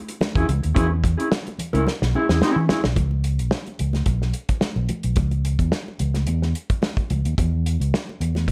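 A dark, clean electric guitar with a warbly pitch drift opens this cool funk excerpt alongside a tight, rolled-off soul drum kit, is joined by very quiet, high-tuned congas at 0.2 seconds and a round, tube-saturated fingered bass at 0.4 seconds, and drops out at 2.9 seconds as a drum fill carries the groove into a new section at 3.0 seconds, with light reverb throughout.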